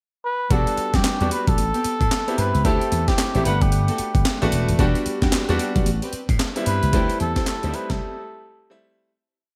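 A cup-muted trumpet opens this bouncy, confident new jack swing piece alone, its veiled, breathy tone close and intimate as it states short motif-based call phrases up front. At 0.5 s the band arrives: a sampler-style breakbeat kit with a thumpy kick, a medium-tuned snare layered with handclaps, and hi-hat, overdriven and gritty with gated reverb, driving a hard-swung drum-machine beat. Beneath it, a punchy, amped slap bass plays a bouncy swung synth-funk line with muted ghost notes and chromatic approach notes. A clear concert grand adds syncopated rootless chord stabs with grace notes, and a studio string section, woody and lush with vibrato, contributes short bowed stabs in the background as the harmony cycles through Em9, Am9, D9sus4 and Gmaj9. The bright 1980s-style digital production carries light small-room ambience, and a fade-out begins at 6.9 s; once the drums and bass stop at 8.0 s, trumpet and piano carry the brief break to the close.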